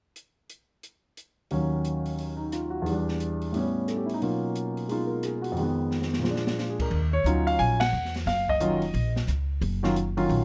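Jazz piano trio in Eb minor at a brisk 178 BPM swing, cool and smoky, where a dark, smooth acoustic drum kit with a high-tuned snare and boomy kick opens alone, a natural, up-front grand piano carries the melody from 1.5 seconds over shifting seventh and ninth chords, a drum fill leads into woody, thumpy pizzicato upright bass at 6.9 seconds, and a band accent lands at 7.8 seconds, all captured by close, detailed microphones with light reverb in this short excerpt from a longer piece.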